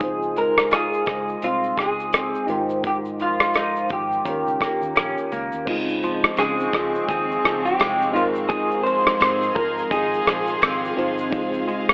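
Heard through a telephone-thin filter and a moderate spring reverb, this sunny, laid-back indie and bedroom pop clip moves at 85 BPM in 4/4 with a swung sixteenth feel in Db lydian, circling Dbmaj7, Ab6 and Eb7. A slightly broken-up, picked lead guitar through a small old amp carries the melody up front with analog chorus until 10.6 seconds, over a clean hollow-body semi-hollow guitar with warbly pitch drift, mellow electric-piano-like synth keys with chorus, phaser and cassette tape colour, a dark foam-muted fingered bass tucked in the background, and a loose, tight-kicked indie drum kit with hi-hat, ride, crash, rim click and shaker. At 6.4 seconds a cloudy, evolving granular pad with its own reverb blooms in, joined by a very quiet, jingly vintage tambourine.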